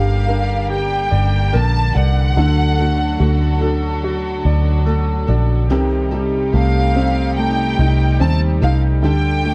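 A dry, close recording in a 1970s studio style frames this melancholic, emotional pop ballad fragment in G minor, moving at 72 BPM in a straight 4/4 across 9.5 seconds. A smooth, lush bowed violin section carries the melody high over a clear, polished baby grand piano, while a studio string section with a reedy, gut-string tone holds sustained chords and a fingerpicked flamenco guitar spins arpeggios in the background. Up front, a dark, round, punchy foam-muted electric bass anchors the changes from Gmadd9 through D and Am7b5/C to a closing Dsus4.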